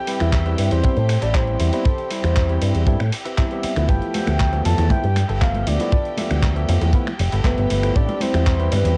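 Nu-disco with a groovy, sensual feel, this excerpt sets a round, dark synth lead with phaser and delay over tine electric piano and soft, sul tasto chamber violins that both pump against the dry, tight kick. An envelope-filtered fingered bass sits up front, a twangy clean guitar riff simmers behind, and a gritty sampler-style kit adds finger snaps, handclaps, hi-hat and ride. Ringing high-tuned congas join at 3.9 s, all on a nearly reverb-free cassette home recording with faint mains hum.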